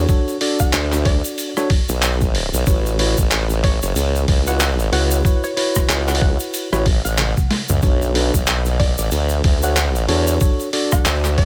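Gritty and funky, this glitch hop excerpt swings over Bm7 and A6 chords as an up-front formant-sweep wobble bass with chorus and tube saturation grinds beneath mellow tine electric piano stabs carrying vintage 12-bit sampler grit, sidechain pumping and tape echo, while an overdriven, pitched-down boom bap sampler-style kit with a high-tuned snare, handclaps, hi-hat, rim click and toms joins a thumpy electronic kick, a grainy egg shaker sits in the background, a woody wave-folded pluck melody enters at 0.6 seconds with cassette tape and tape echo, and a drum fill arrives at 7.2 seconds in a dry, close sound.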